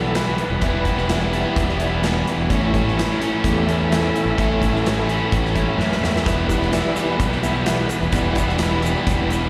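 Swaggering and brooding, this short classic rock cut in E dorian drives at 128 BPM, with a biting overdriven guitar and a bright overdriven electric guitar with slapback echo playing riffs over a growling fingered bass, a punchy big rock drum kit with a fill at 5.8 seconds, sustained tonewheel organ chords through a slow rotary speaker, a barely audible picked steel-string acoustic guitar and a grainy tube shaker entering at 6.3 seconds, all heard through a venue's PA in recital hall reverb as the chords move from Em to A and back.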